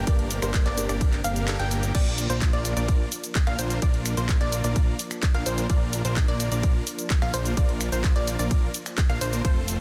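A festival progressive house drop bursts in at once with a huge, detuned supersaw riff, a lush pluck arpeggio and a fat, nasal analog bass, all pumping under sidechain, while a very quiet, warbling pad holds sustained chords beneath. A felt-muted upright piano adds soft, mellow accompaniment until 1.8 seconds, and a punchy, up-front electronic kick drives alongside a tape-warm house kit of claps, finger snaps, hi-hat, shaker, ride and crash. The kick drops out from 1.5 to 1.9 seconds around a band accent before the anthemic, uplifting drop surges on through a dense, heavily limited mix with light digital ambience.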